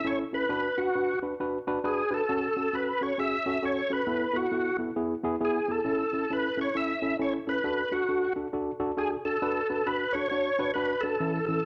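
A dark, roomy studio sound frames this brief, uplifting soul cut at 135 BPM with a swung feel, where a thick, key-clicking tonewheel organ with overdrive, chorus vibrato, slow rotary speaker and plate reverb carries the melody up front over a worn, slightly out-of-tune tine electric piano, lightly overdriven through a combo amp, comping through chords moving from A and Bm to an Esus4 resolving to E before settling back on A, D and Bm.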